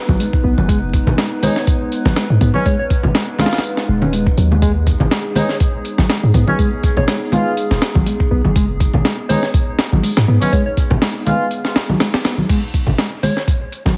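A gritty, sampler-style breakbeat kit sits up front with a thumpy kick, medium-tuned snare, hi-hat and crash, driving this funky, raw swung breaks fragment alongside compressed, soft-handed congas and a deep, boomy 808-style bass with tube saturation. A reedy electric piano with overdrive repeats a mellow riff over a dark, warbling tape-like pad that pumps with the sidechain and drops out at 12.5 s, as the harmony falls away. From 1.4 s, a round, gentle FM synth lead with chorus and digital delay sings a high melody through a small-speaker tone, while a distant, roomy brass section adds stabs with light vibrato, all framed by a heavily compressed radio sound and vinyl crackle.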